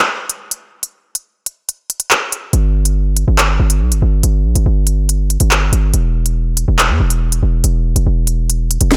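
Dark and ominous, this half-time drill excerpt opens with the electronic drum kit alone from 0.3 seconds, its sharp snare, crisp hi-hats and handclaps sitting up front in a dry, close sound. At 2.5 seconds the hard-hitting 808-style bass drops in, a punchy, heavy sine tone with a noise layer, fast attack and decaying tail, ranging from E1 to E2 and just as forward as the drums.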